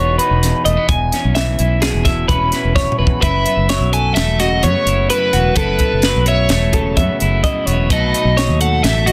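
A dense, heavily limited modern mix with light reverb carries this bright, intricate excerpt of math rock and midwest emo at 128 BPM in 5/4, where a bright, clean, twangy twelve-string electric guitar spins compressed arpeggios through analog delay over a slightly broken-up electric guitar, a round, foam-muted fingered bass up front, and a crisp, airy fusion kit with a high-tuned snare and punchy kick that enters at 0.2 seconds, fills from 2.8 seconds, and ushers in an overdriven semi-hollow guitar melody, also delayed, at 3.2 seconds as the chords move from Emaj7 and E6 to F#m7 and B7.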